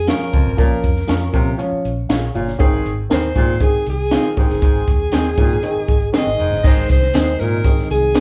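A straight four-beat groove drives this short, uplifting and danceable excerpt of uptempo 1960s-style soul, with a compact cocktail drum kit up front, its punchy kick, high-tuned snare and dark cymbals anchoring a round, foam-muted electric bass. An alto saxophone carries the melody with vibrato and a smooth top, a baritone saxophone plays a low riff with scooped notes, a woody, slightly detuned upright piano adds accompaniment with audible action noise, and a twangy, slightly broken-up electric guitar supplies stabs. At 6.6 seconds a mellow tonewheel organ with a slow rotary speaker enters with sustained chords as a jingly tambourine joins in the background, and the band sounds as if it is playing live in one room with light reverb.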